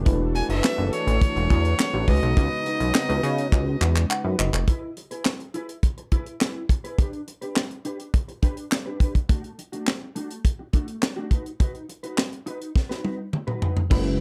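A glossy, retro synth bass sits up front in this late-night, danceable early-eighties boogie funk excerpt, its pulse-width-modulated tone plucking with a fast attack before sustaining. Beside it, a tight funk drum kit with a high-tuned snare, handclaps, hi-hat, crash and toms sounds natural and close, rolling into fills at the end of each section. In the opening section a clear, intense bowed fiddle carries the melody with light vibrato until 4.1 seconds. Behind it, a lush, dreamy FM electric piano layered with a soft pad and a smooth, detuned analog pad hang in the background, the piano adding a short fill of its own. At 4.7 seconds the bass, keys and pad drop away, leaving the drums and a dark, clean, fingered electric guitar riff with analog chorus to carry the second section until the keys, pad and bass return briefly at 13.9 seconds. The mix is dry and warm, with the harmony moving from suspended ninth chords in the opening to plainer chords in the second section.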